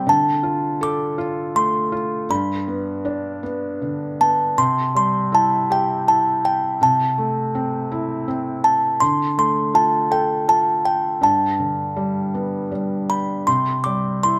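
A children's lullaby in C major, tender and innocent, drifts along in a rubato 3/4 at 81 BPM in this short passage cut from a longer piece. A delicate, tinkling music box with a large-box resonance carries the melody up front in a high register, while a felt-muted upright piano supplies soft, mellow accompaniment beneath it, its thin felt and audible action noise lending an intimate closeness. Light reverb and close, detailed miking frame both parts as the harmony moves from Dm7 and G toward a settled C chord at 13.5 seconds.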